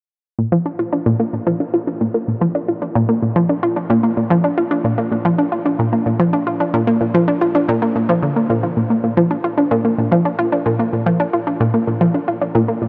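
A straight 4/4 pulse carries this expansive, luminous ambient passage, cut from a longer piece. A single analog pluck sits up front from 0.4 s, its round, detuned sawtooth tone shaped by a fast attack, short decay and filter pluck, and thickened with chorus and delay, all inside a huge, wet reverb with a long tail. At 9.0 s the music moves into a new section, and the pluck carries on through to 12.9 s.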